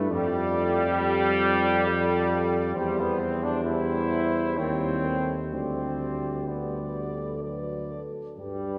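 This lyrical, hymn-like piece for brass band opens with the whole ensemble sounding together from the first moment, moving in an unhurried, rubato 3/4. A mellow cornet carries the melody with a soft attack and light vibrato, while a dark, distant French horn section sings a very quiet second line beneath it. An up-front trombone section, clear and slightly vintage in tone with a touch of vibrato, forms the core of the accompaniment, supported by a very quiet solo trombone with a smooth top and a prominent tuba anchoring the bass. The harmony drifts through C/E to a colorful Eb7 at 4.6 seconds before resolving toward G/D and coming to rest on D. The recording is placed further back in a spacious church, where a long, wet reverb gives this short excerpt a glowing, devotional atmosphere.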